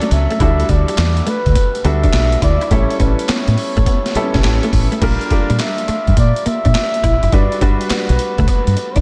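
This flirty, upbeat new jack swing fragment opens with a veiled, breathy bucket-muted trumpet carrying a whispered, jazz-style melody with scooped notes and analog delay, over intimate baby grand piano chords with audible action noise, a clean, direct electric guitar riff with ensemble chorus set in the background, and gritty, pitched-down boom bap sampler drums up front, with a thumpy kick, high-tuned snare, hi-hat, handclaps and crash. At 0.1 seconds a dark, round, foam-muted fingered bass joins, punchy and prominent. The swung 104 BPM groove moves through Em11/D, A7, Bb6 and Gmaj7 in a dreamy mix soaked in lush hall reverb.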